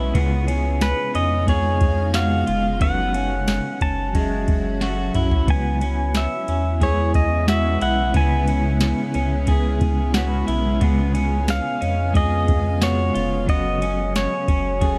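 This melancholic, haunting dream pop passage at 90 BPM opens at once on a bed of sound: a dark, clean, fingered electric guitar with tremolo and subtle chorus, a cloudy, evolving granular pad holding sustained chords, a bright, slightly broken-up electric guitar through a small old amp picking twangy arpeggios with delay, and a round, sine-like sub bass. Faint in the background, a ringing, metallic vibraphone struck with medium hard mallets adds delayed texture until 12.8 seconds. A soft vintage rhythm box comes in at 0.1 seconds, up front with a deep kick, crisp snare, ride cymbal, tambourine and toms, and it plays a drum fill just before 5.5 seconds. At 0.8 seconds a clean, compressed pedal steel guitar takes the melody, played with fingerpicks and slide, with volume swells and delay. The chords move through C#7, F#m and C#m7 before returning to C#7 and F#m. The dark, warm production is lightly reverberant, and this short section is cut from a longer piece.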